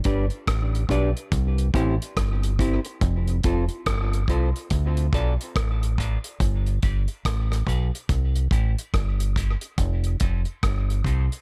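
Spacious and meditative, this dub reggae excerpt moves at an unhurried 71 BPM in 4/4 with a swung sixteenth-note feel, cycling through G, C, F and D minor. A dry, damped 70s drum kit with a tight kick, hi-hat and rim click sits up front beside a dark, round, punchy fingered bass, the loudest part, while a clean, hollow-toned semi-hollow electric guitar plays accompaniment through a high-pass filter and tape echo, with a filter sweep on it from 1.3 seconds. The echo-heavy mix carries little reverb, leaving the spaces between parts open and close.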